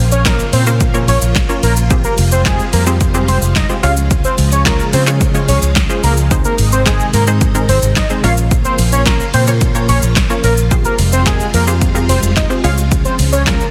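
Carefree and summery, this dance-pop excerpt moves at 109 BPM in a straight 4/4, cycling through Bbm, Fmadd9, Db and Ab across its roughly 13.7 seconds. A punchy analog drum machine sits up front and dry, its tape-tinged kick and snare joined by handclaps, hi-hat and shaker. Beneath it, a vintage muted fingered electric bass is the loudest part, dark, round and amped with a foam-muted thud and sidechain pumping. A lush, detuned unison pluck with a filter sweep supplies short, quick-attack accompaniment, while a shimmering string machine of violins holds bright, slow-blooming chords through ensemble chorus, both breathing with sidechain pumping. Over the top, a fat analog lead carries the melody from 0.1 seconds with a mellow sub-octave body, vibrato, chorus, phaser and tape echo, all set in light digital ambience within a dense, heavily limited modern master.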